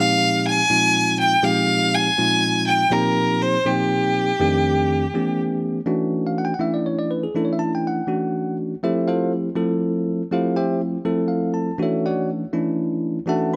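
Slick, bright jazz in a straight 6/8 at 81 BPM, tuned to A4 = 445 Hz, in which a single bowed violin with a rich, focused, vibrato-laden tone carries the melody until 5.4 seconds, while a clean, bell-like tine electric piano plays accompaniment throughout, moving through chords such as Bb13sus4, F13, Dmaj9 and Fmaj9 and adding a short fill at 11.1 seconds, both sitting up front in a moderate echo-chamber reverb with studio ambience, in a passage cut from a longer piece that ends at 13.6 seconds.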